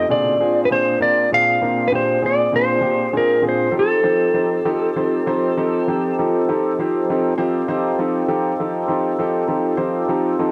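A home cassette recording with moderate studio reverb gives this rollicking, swaggering blues in F mixolydian a snug, intimate sound, rolling along at 66 BPM in a straight 12/8 as the harmony moves from Bb9 to F9. Up front, a clean electric lap steel guitar sings the slide melody with fingered notes and volume swells until 6.2 s, while a clear, natural grand piano accompanies with its action noise audible and a fat, warm tonewheel organ holds sustained chords through a slow rotary speaker. The piano closes the short cut with a fill from 10.1 s.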